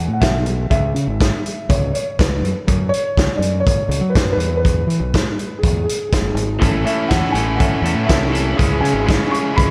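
Indie rock at 122 BPM in A major, upbeat and jangly, where a dark, woody upright piano carries the melody through analog delay over a growling, overdriven fingered bass and a loose, gritty, up-front drum kit with a punchy kick, until at 6.6 seconds a cranked, overdriven stack guitar with subtle chorus and a twangy, lo-fi guitar through a small old amp join on slapback-echoed riffs, all set in a lush hall reverb for a big arena sound.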